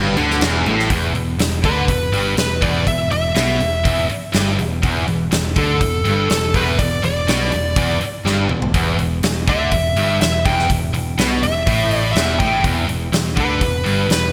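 In a straight, driving 4/4, this heavy hard rock passage, cut from a longer piece, rides on a big, natural-sounding acoustic drum kit placed up front, with a punchy kick, medium-tuned snare, hi-hat, toms and crash cymbal, all bathed in gated reverb and marked by a short fill at 8.3 seconds. Beneath it, a growly, amped electric bass picks out the low end alongside two riffing guitars: a bright high-gain guitar with distortion and a dark, hollow-bodied semi-hollow guitar thickened by ensemble chorus. At the very start, a gritty tonewheel organ on slow rotary speaker holds very quiet sustained chords, and a double-tracked garage guitar with overdrive and subtle chorus sits in the background; both stop at 0.9 seconds. From 1.7 seconds a smooth lead guitar with delay carries the melody up front, singing in a higher register above the riff. The whole track sounds bright in a 1980s-style digital production, set in a lush hall reverb.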